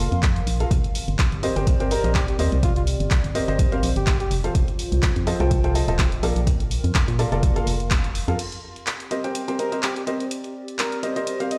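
Energetic yet bittersweet, this piano house excerpt swings lightly as a clear, woody upright piano riff pumps with tape echo against a punchy electronic kick and an analog drum machine playing handclaps, hi-hat and crash, while a hollow, organ-like FM bass sits underneath and a warbling, lo-fi pad hovers in the background. A mellow, bucket-muted trumpet with vibrato, gritty sampler character and tape echo plays a jazz-style solo line from 1.9 s, then returns at 9.6 s after the band hits an accent at 7.9 s. A stone room reverb gives the track the feel of a big sound system in a bare room.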